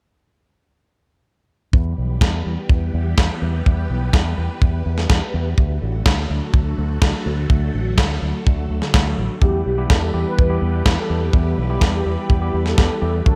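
A dry, tight kick drum sits up front in this danceable, nostalgic italo disco excerpt, entering at 1.7 seconds with a fingered electric bass that carries an envelope filter and a filter sweep, and a swirling, vintage phased string machine holding sustained chords over Em, D and back to Em. A gritty, overdriven electronic snare with gated reverb joins at 2.2 seconds. At 9.4 seconds a mellow, detuned synth brass takes the melody with chorus, delay and shimmer reverb, while a clean tine electric piano adds stabs, all within a bright 1980s-style digital production with light studio reverb.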